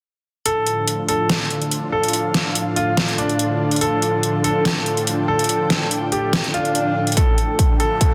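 A clear concert grand piano with audible action noise carries a tape-echoed melody over a detuned supersaw pad that pumps through a low-pass filter, and an overdriven dubstep kit of deep snare and metallic hats opens this menacing, aggressive heavy wobble dubstep passage in half-time at 143 BPM in D minor, as an ethereal, chorused airy pad drifts in behind at 1.6 s, an electronic swell and riser sit in the background from 6.5 s, and a punchy electronic kick lands up front at 7.2 s, framed by a lush hall reverb and a dense, heavily limited master.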